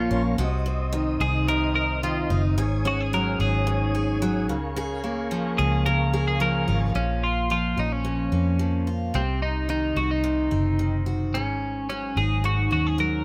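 A straight 4/4 pulse carries this tender, reflective acoustic pop excerpt, anchored by a dark, round, foam-muted electric bass that sits punchy and up front beside a picked steel-string acoustic guitar with audible finger squeak. Over them, a bright, twangy twelve-string electric guitar carries the compressed, clean melody with a warbly pitch drift. A smooth tonewheel organ holds sustained chords through a chorus vibrato and slow rotary speaker, with key click, until it drops out at 6.9 s, leaving a dry, close sound as the second section begins on Bbm.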